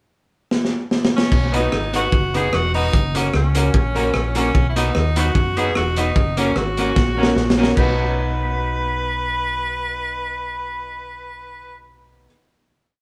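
Recorded live in a moderate stone room, this bouncy, cheerful ska piece at 149 BPM in B major opens with a gritty, saturated breakbeat kit with tape echo playing a side-stick ska beat and a fill from 0.5 s, before a punchy, vibrato-laden tenor saxophone states hook phrases over a round hollow-body bass walking through B and F#, with off-beat chops from a clean, tape-echoed electric guitar and a jangly tack piano in the background; the drums stop at 7.9 s as the band settles on a final B chord and rings on to 12.3 s.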